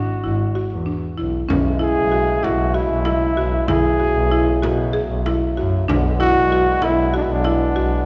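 Pensive and hypnotic, this contemporary chamber piece in 7/8 sets a smooth, lightly vibrato flugelhorn melody up front over woody, buzzing marimba arpeggios and a bowed double bass with a nasal gut-string tone, before a breathing, reedy pedal harmonium on sustained chords and a small, bright frame drum in the background join at 1.5 s, all set within light reverb and a dark production.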